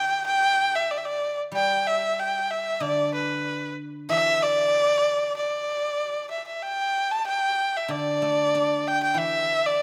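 A moderate recital hall reverb surrounds this short passage of Chinese traditional chamber music, cut from a longer piece and carrying a festive, graceful mood. A single erhu carries the melody up front and close, its rich, earthy tone touched with light vibrato, portamento and an airy quality to the bow. Beneath it, a guzheng played with fingerpicks supplies accompaniment in its lower register, its acoustic strings ringing with a silvery shimmer. The music sits in the D zhi mode at about 94 BPM in 2/4, though the feel is rubato and flexible, with the instruments tuned to A4 = 441 Hz. Both parts play throughout the 9.8 seconds, and the music moves into a new section at 6.6 seconds.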